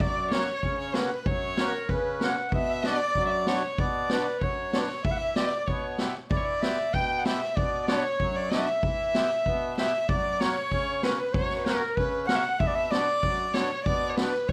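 In a straight two-four pulse, this bittersweet, soulful klezmer excerpt sets a smooth-topped, classical-style clarinet on the melody alongside a close, intimate violin second line with light vibrato and an airy bow, while a reedy accordion carries the accompaniment and an up-front street-band drum kit adds a boomy kick and high-tuned snare, all within a moderate studio reverb.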